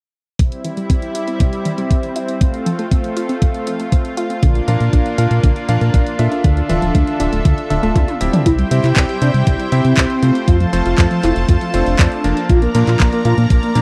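Italo disco with a bittersweet, danceable mood, opening on a lush, airy sawtooth pad with chorus, a punchy, gritty pluck tucked in the background with tape echo and a filter sweep, a thumpy, up-front electronic kick, and an overdriven house kit of handclaps, bright hi-hats and toms. A round, deep analog bass with tube saturation arrives at 4.4 seconds, followed at 4.7 seconds by cutting, clangy electric grand piano stabs, and the pluck drops out at 8.4 seconds during a drum fill. A thick, wave-folded unison lead with vibrato, ensemble chorus and tape echo takes the melody from 8.5 seconds, all in a dry, close 1970s-style studio sound.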